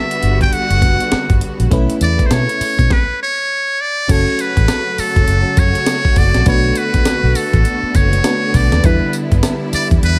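A swung sixteenth-note new jack swing groove drives this slick, punchy R&B passage from a longer piece, with a gritty, compressed breakbeat kit of thumpy kick, snare, hi-hat, tambourine and crash, and a dark, round, foam-muted electric bass sitting low and strong. Up front, a buzzy, brilliant trumpet with a metal mute carries the melody with light vibrato over a glassy, bell-like FM electric piano treated with chorus and a lush, close string section holding sustained chords. A stop arrives at 2.9 seconds, and the groove returns at 4.1 seconds as the second section begins, all set in a digital ambience.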